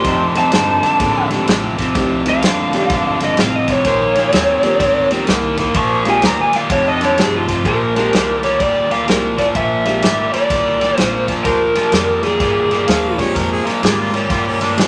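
A lo-fi, overdriven lead guitar through a small cranked amp solos over the first 7.7 seconds of this laid-back, swaggering electric blues shuffle in Bb mixolydian at 126 BPM, carried by a swung 4/4 feel. A bright, crunchy rhythm guitar riff sits up front with a punchy, natural-sounding acoustic drum kit on kick, snare and ride, while a woody, thumpy pizzicato upright bass and a mellow, intimate baby grand piano with audible action noise fill in beneath, and a distant, roomy horn section adds tight jazz-style stabs in the background. A clear harmonica with light vibrato enters at 12.9 seconds for a closing jazz-tinged line, all set in moderate studio reverb in this excerpt from a longer piece.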